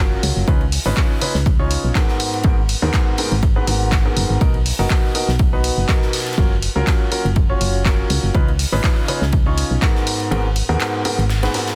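Joyful and uplifting, this short piano house excerpt sets a clear, woody upright piano riff, with audible action noise and a touch of delay, against a round, mellow FM bass, both pumping with the sidechain through chords of C#9, G#m9, Bmaj7 and F#maj7 on a lightly swung groove. An up-front, dry electronic kick drives the beat with handclaps and hi-hat from a punchy analog drum machine, while a gated 80s kit adds bright, high-passed cymbals and hats and a fat snare in a bright stone room. The kick drops out at 10.3 seconds, leaving the dense, heavily limited mix to carry on to the cut at 11.8 seconds.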